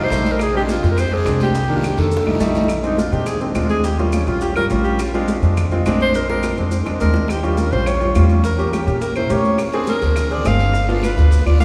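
Afro-Cuban jazz in a sunny, danceable mood, cut from a longer piece, where a breathy, intimate alto saxophone with vibrato and scooped notes carries the melody and takes a solo from 2.7 s over a warm baby grand piano and an up-front pizzicato upright bass, while ringing high-tuned congas, tight soft-handed bongos, woody claves, a raspy guiro and grainy maracas add a light percussion bed, with a long church reverb surrounding the ensemble.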